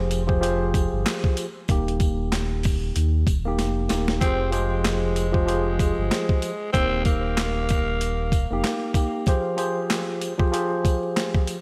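Boom-bap hip-hop in F minor at 95 BPM with a swung 16th feel, this short, tough and dark excerpt rides a compressed, pitched-down sampler kit with a thumpy kick, high-tuned snare, hi-hat and handclaps, plus jingly sleigh bells tucked in the background. A worn, slightly out-of-tune tine electric piano with cassette-tape coloring moves between Fmadd9 and Eb over a deep sine sub bass with octave that drops out at 8.6 seconds. After a drum fill at 3.6 seconds, a breathy, raspy tenor saxophone enters at 4.2 seconds with a growling, subtoned jazz solo through tape echo, all set in light reverb under a layer of vinyl crackle.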